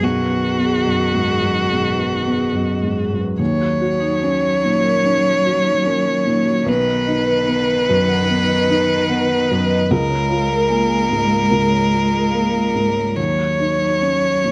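Neoclassical piano and strings at 73 BPM in 4/4, played with a rubato feel, carrying a longing, melancholic mood throughout this short cut from a longer piece. A single bowed violin sings the melody up front, its tone rich and focused with vibrato, while a lone cello holds a second line in the background, expressive with a soft attack, vibrato and portamento. A felt-muted upright piano supplies the accompaniment close to the listener, sounding dark, boxy and intimate, with its action noise audible. Behind them, a marimba struck with soft mallets adds round, mellow arpeggios, touched by a slapback echo. The harmony moves through G#m7/B, D#m7, B and A#m7/C#, and a new section begins at 3.4 seconds, all captured by close, detailed microphones in a light reverb.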